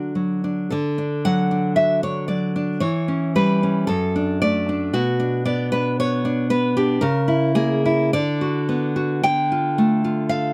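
A fingerpicked nylon-string guitar, fresh-strung and up front, carries this short excerpt from a romantic solo classical piece in D major, unfolding in a slow, rubato 2/4 at around 50-59 BPM with a melancholic, intimate mood. Its harmony moves from D through diminished passing chords to B minor, then darkens to D minor at 9.3 seconds. Close, detailed miking with little reverb keeps the guitar's warm tone near and personal.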